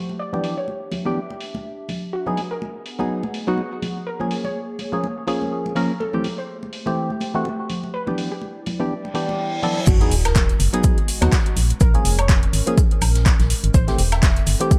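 This deep house passage, cut from a longer piece, opens on a warbling, lo-fi pad of detuned sustained chords that sits dark in the background with chorus, its own reverb and sidechain pumping. Almost at once, several parts join in. Vintage, band-limited congas arrive, along with a soft, round pluck melody carrying lush chorus and delay. A hollow, mellow organ stab sits up front with phaser, delay and a filter sweep, over a deep house kit of handclaps, metallic hats, woodblock and crash that is overdriven and low-pass filtered. The minor-seventh chords give a deep, warm mood, and the swung sixteenths keep the groove loose. At 9.1 seconds a reverse cymbal and sub drop enter in the background, and at the drop at 9.9 seconds a punchy, overdriven kick comes up front, a percussive FM bass with an organ-like tone pumps beneath, and an airy acoustic brush kit with a high-tuned snare, shaker and hi-hat adds a polished layer far back in the mix.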